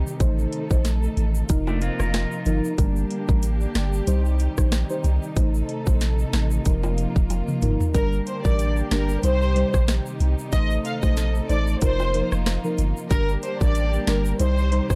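A swung 93 BPM dancehall groove in 4/4 and G minor drives this sultry, bouncy piece, where a tight, up-front island pop drum kit with sharp snare and metallic hats and a punchy sine sub bass with a pitch-drop attack anchor sidechain-pumped bowed studio strings, dark detuned chord stabs coloured by chorus and phaser, and faint, dry egg shaker and timbales, while a slightly broken-up electric guitar plays a brief delayed arpeggio from 1.7 to 2.7 seconds and, after a drum fill, a lush symphonic violin section takes the melody at 7.9 seconds, all in a dark, warm production with little reverb.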